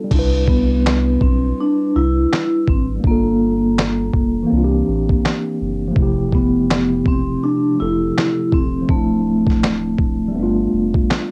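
A soft-mallet vibraphone carries the melody from 0.5 seconds, its metallic, ringing tone gently shimmering with a medium motor vibrato and an airy glow that the cassette tape softens further. This mellow, cosy lo-fi hip hop fragment, cut from a longer piece, moves at 82 BPM in 4/4 with a lazy swing on the sixteenths, set in C major and tuned slightly sharp to A4 = 441 Hz. Up front, a gritty, compressed sampler-style drum kit brings a thumpy kick, a fat snare, handclaps and a crash cymbal, with the hi-hats muted throughout. Alongside it, also up front, a clean tine electric piano, heard as if through its built-in speakers and also coloured by cassette tape, lays down jazzy chords from Cmaj7 through Gm7, C7, Fmaj9 and Dm7 to a closing G9, while a deep, round dub sub bass holds long sustained notes underneath. Light reverb and the hazy character of a home cassette recording wrap the whole 11-second passage in a dusty, intimate feel.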